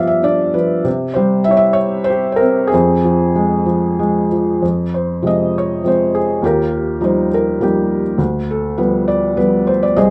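In a flexible, rubato 3/4, the pulse drifts between 90 and 103 BPM, giving this short classical piece for lyrical solo piano a breathing, unhurried sway. The mood is moody and brooding, settled in F minor, with harmony moving from G7 through C and F minor to a rich E-flat add-nine and back toward G7 over D. A felt-muted upright piano carries everything alone from 0.0 to 10.1 seconds, spanning C2 to F5 with a soft, mellow, intimate tone that sits up front in the sound. The phrase is stated once and then heard again from 4.6 seconds, its repetition deepening the inward, reflective character. A small room adds moderate reverb with a brief decay, and the dark production keeps the instrument close and hushed, tuned slightly low at A4 = 439 Hz. The passage is cut from a longer work.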